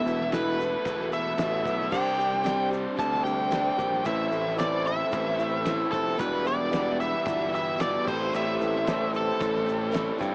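A nasal, overdriven lead guitar with a parked wah carries the melody up front in this dusty, wistful folk rock and heartland rock fragment, moving over a progression that runs from Esus4 and Csus2 to Am, Em and Am7. Beneath it sit a double-tracked crunchy guitar riff, a growly, direct picked electric bass with transformer saturation, and a damped 70s drum kit with a fat snare, tight kick and dark cymbals in the background. A boxy, swing-style picked acoustic guitar, veiled con sordino strings, a brilliant baby grand piano with audible action noise, and a grainy egg shaker add quiet color, all heard through light reverb and a worn cassette sound with warbly pitch drift and a small-speaker character.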